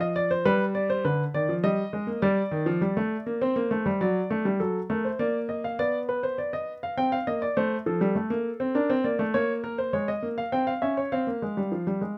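A baby grand piano plays alone from the start of this short passage from a longer piece, a solemn, serious baroque-style two-part invention in 3/4 at 101 BPM with a straight feel, spanning D3 to G5. Its natural, up-front tone is caught by close, detailed microphones in a dry room, and the harmony moves from G through G minor and D/F# before a second section at 5.8 seconds turns through Bdim, Cm, F and Bb. The passage settles on Fm at 11.1 seconds.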